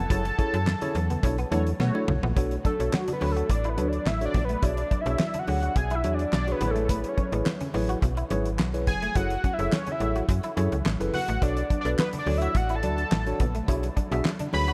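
A dreamy mix soaked in cathedral-like reverb frames this slick, funky slice of early-eighties boogie funk, cut from a longer piece and moving at 106 BPM in a straight 4/4 in B dorian. Up front, a damped 70s drum kit with a fat snare, tight kick and rolled-off top drives the groove with handclaps, hi-hat and toms, alongside a snappy, metallic FM slap-style bass, while compressed, saturated congas with hard hands sit in the background. A clean tine electric piano through a combo amp carries the chords, and a hollow-body electric guitar, fingered and treated with ensemble chorus, plays a riff further back. A fat, detuned analog lead built from sawtooth and square waves with a sub octave, filter sweep, vibrato, chorus and tape echo carries the melody, taking over as a solo at 2.4 seconds, just after a drum fill. Very quiet, round synth brass with phaser appears only briefly from 1.5 to 2.0 seconds as a second line. 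The harmony glides through rich chords such as F#m7, Bm9, E13/B and Amaj9.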